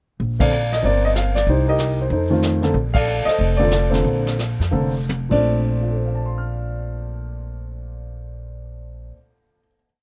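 Captured in a snug booth, this playful jazz piano trio piece sets a dark, mellow baby grand with plate reverb, playing a motif-based melody and syncopated drop-2 comping, over a woody, thumpy gut-string upright bass in a two-feel and a vintage brush kit sweeping the snare beneath dark cymbals, with band accents at 0.4 and 2.9 seconds and a slowing down capped by a drum fill before the drums stop at 5.4 seconds and a final chord closes the piece.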